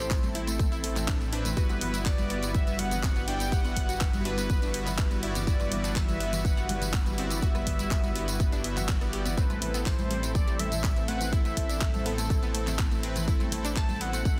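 A punchy, up-front electronic kick drives this dreamy, driving progressive house excerpt at 123 BPM in E minor, entering at 0.1 seconds together with a layered pop kit of handclaps, hi-hat, rim click and tambourine, its snare softly clipped and both kits set in studio reverb. Beneath them a dark, rumbling detuned saw bass with tube saturation sits between G1 and A1, pumping with the sidechain along with the soft supersaw stabs, the bright background pluck arpeggios roughened by vintage 12-bit sampler grit, and the congas and woodblock played with soft hands from 0.2 seconds. Over the top, a velvety sawtooth lead carries the melody from A4 to A5 with vibrato, chorus and dub echo. A very quiet, thick unison pad holds sustained chords colored by chorus and phaser as the harmony moves from Am to Emadd9/G at 1.6 seconds and back to Am at 9.4 seconds. The whole piece is wrapped in digital ambience and a dense, heavily limited modern master.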